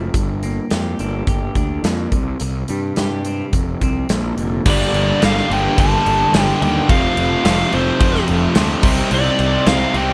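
Quiet-loud alternative rock at 107 BPM in 4/4, this short cut from a longer piece feels angsty and cathartic. It opens with a clean electric guitar playing arpeggios, lightly touched by chorus, over a punchy, up-front fuzz bass with overdrive and a big acoustic drum kit with bright cymbals, a medium-tuned snare and a punchy kick, moving through Gm7, C5, F5 and Bb. At 4.7 seconds the clean guitar stops and the loud half arrives: a stack of riffing guitars takes over, including a bright overdriven guitar and a thick, distorted fuzz guitar sitting in the background, plus a very quiet, double-tracked and compressed fuzz guitar beneath them. Above the wall of riffs, a biting lead guitar with overdrive and slapback echo carries the melody in a high register. The chords shift through Gm, F and Cmadd9 as the drums and bass continue, all set in a moderate studio reverb.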